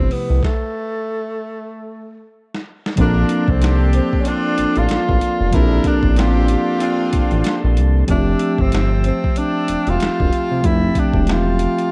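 A breathy tenor saxophone carries the melody up front, its whispered, intimate jazz-style solo sliding into scooped notes with soft attacks and gentle vibrato. This sensual, soulful neo-soul and R&B piece moves at 94 BPM in 4/4 with a lazy sixteenth-note swing, set in Bb lydian and drifting from Fmaj9 to Bbmaj9 and back. A mellow tine electric piano supports it with clean, direct accompaniment, while a smooth, dark synth bass blending sawtooth and square waves sits prominently underneath, with a moving notch and vibrato. The gritty, compressed, pitched-down boom bap drum kit has a thumpy kick and a medium-tuned snare; a stop begins at 0.4 seconds, and a drum fill at 2.3 seconds leads into a new section. At 3.0 seconds a clear tonewheel organ enters in the background with sustained chords through a slow rotary speaker, and a loose, punchy horn section briefly adds pop-style stabs with tape echo. 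Most parts share a cassette-tape character, and the whole has the light reverb of a home recording, cut from a longer piece.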